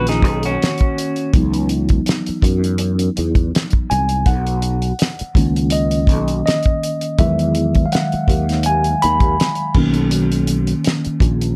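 A light reverb wraps this warm, soulful neo-soul R&B excerpt with a gently swung 16th-note feel, where a mellow tine electric piano, heard through its built-in speakers, takes a clean solo from start to finish over Bmaj9, C#m11 and Emaj9 chords. Up front, a growly, punchy fretless electric bass with ensemble chorus sustains underneath, and a damped 70s drum kit enters at 0.1 seconds with a fat snare, tight kick, dark cymbals and a dry, rolled-off top. A slightly broken-up, lo-fi electric guitar through a small old amp adds a compressed, picked second line with plate reverb, stopping at 1.3 seconds.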